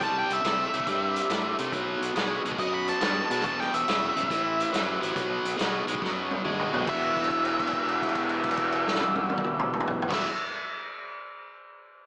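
Blues rock and southern rock power trio, gritty and heavy, cut from a longer piece, swinging at 140 BPM in E minor, with a dark octave-fuzz lead guitar singing high over a biting, double-tracked overdriven guitar riff, a growly fuzz bass, a punchy vintage drum kit with dark cymbals, and a very quiet tonewheel organ holding chords through a slow rotary speaker, all in a wet hall reverb with a big arena feel squeezed through a small speaker, as a drum fill at 6.0 seconds leads into a held note from 6.9 seconds.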